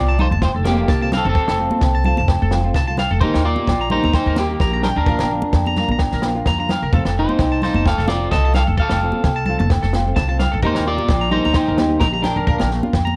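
Highlife guitar band music, joyful and made for dancing, moves at 129 BPM in 4/4 with a lightly swung sixteenth-note feel, in F mixolydian over a cycle of F, Eb and Bb chords. Up front, a picked electric guitar at the edge of break-up carries the melody, slightly broken-up yet warm in tone, while a second, brighter and twangier electric guitar plays arpeggios through tape echo. A woody, growly upright bass, plucked and thumpy, sits prominently beneath them, and a fingerpicked nylon-string guitar adds full-bodied classical accompaniment in the background. A compact cocktail drum kit supplies a punchy kick and high-tuned snare with a dry, natural sound, joined by high-tuned congas struck with hard hands and ringing, band-limited agogo bells. The parts all enter within the first 0.4 seconds and play through this short cut from a longer piece, wrapped in a small room ambience.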